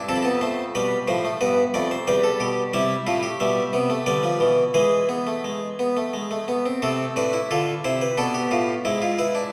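Classical baroque-style four-part fugue for harpsichord, serious and driving in a straight triple metre, heard as a short section cut from a longer piece. A single Flemish-style harpsichord with one set of strings carries all four voices, its plucked tone bright and airy and placed up front, ranging from deep bass notes up into the high treble. The opening stretch moves through darkened minor harmony, passing a half-diminished chord and a diminished chord before settling on a major dominant chord at 4.8 seconds. A new section begins at 6.8 seconds on the home minor chord and closes on a seventh chord that leaves the phrase unresolved at the cut. The recital hall's wet reverb gives the harpsichord a lingering tail of about 1.6 seconds.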